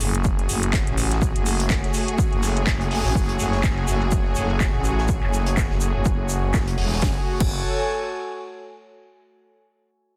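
A bouncy, aggressive bass house groove at 124 BPM in 4/4, with a 58% swing on the sixteenths, runs in F# minor over a single F#madd9 chord in this section of a longer piece. A house kit of cracking snare, metallic hi-hats, handclaps and crash cymbal, overdriven and darkened by low-pass filtering, drives from the very start and is joined at 0.2 seconds by a punchy, overdriven electronic kick, while a second, quieter breakbeat kit adds a gritty, saturated layer of high-tuned snare, hi-hat and shaker, thinned by high-pass filters. Up front, a thick, growling FM bass sits low between E1 and A1, pumping against the kick and moving through a filter sweep that runs until 7.0 seconds. Above it, a lush bowed string section holds sustained chords with vibrato and a smooth top, filtered and pumping in time, while an airy, breathy pad with chorus and a detuned, noisy edge lingers until 8.9 seconds. 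A barely audible electronic impact marks the opening, and the whole sits in a light, small-room reverb under a dense, heavily limited master.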